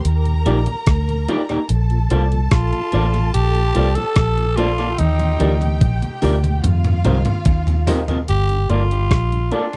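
A growling, raspy tenor saxophone with tape echo carries the melody in this sweet, romantic lovers rock reggae excerpt, over a round, punchy muted electric bass up front, a thumpy gated 80s drum machine with a fill from 5.0 to 8.3 seconds, lush bowed strings that stop at 8.3 seconds, a slightly broken-up electric guitar playing stabs, an intimate baby grand piano in the background and a very quiet, mellow tonewheel organ with slow rotary, all in a dry, close 1970s-style studio sound.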